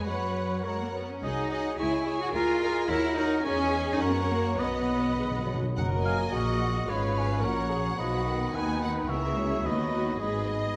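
Lively and cheerful, this quick classical-period movement for symphony orchestra moves in a flexible, rubato two-beat pulse, and it is cut from a longer piece. A close violin section carries the melody with warm vibrato and expressive portamento. A lush, distant second violin section, an airy, hollow flute and a clear oboe with light vibrato weave second lines around it. Underneath, a smooth, even viola section and a roomy, mellow bassoon supply accompaniment, while a French horn section sustains chords in the background. A rich cello section and a soft-attacked double bass section anchor the bass. Timpani played with hard mallets on calf heads enter with an articulate fill at 4.6 seconds and return briefly at 9.1 seconds, all bathed in the generous reverb of a scoring stage.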